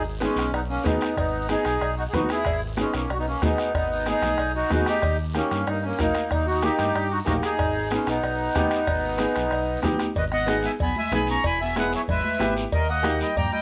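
Fiery and passionate, this cumbia fragment, cut from a longer piece, drives along at 187 BPM in a straight 4/4, set in G# harmonic minor and moving through G#m, D#7 and back before reaching E and D# in its closing section. An up-front, reedy accordion with slow beating carries the melody from the start, its sound colored by cassette tape, while a smooth synth bass built from sawtooth and triangle tones glides underneath with portamento, vibrato and a moving notch. A clear, woody upright piano, also tape-tinged, intimate and with audible action noise, supplies accompaniment from 0.2 seconds. The percussion blends bright thin-skinned congas and a soft-beatered bombo in the background, a raspy guiro, and very quiet ringing cowbell and timbales. At 4.6 seconds a bright clarinet enters as a very quiet, distant second line in a jazz style, with vibrato and scooped notes. Moderate spring reverb and a small room give the whole home cassette recording its sense of space.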